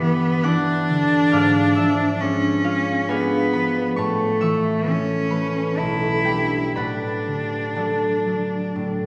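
A serene romantic classical fragment for cello and harp opens with a clear, bowed cello singing a smooth melody with vibrato over the ringing, fingerpicked chords of a concert harp, moving in a rubato 3/4 at around 60-69 BPM through harmonies from Em7/G and G#dim7 to A, G/B and D/A, all set in the lush, lingering reverb of a church or concert hall.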